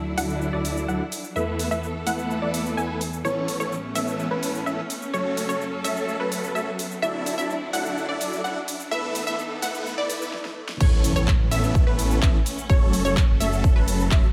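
A straight 4/4 pulse at 127 BPM drives this uplifting, anthemic festival progressive house cut in A major, where a filter-swept build-up carries a huge, euphoric supersaw lead riff, lush detuned unison pluck arpeggios with digital delay, and a thick, chorused saw bass, each pumping with the sidechain. Beneath them sit bright, sustained string chords in the background and an overdriven big-room kit with a towering snare. After a drum fill and stop at 10.3 s, the drop lands at 10.8 s with a punchy, up-front electronic kick and an impact from the very quiet risers and swells, while the chords cycle through Dadd9, Esus4, Aadd9 and F#m in a moderate hall reverb.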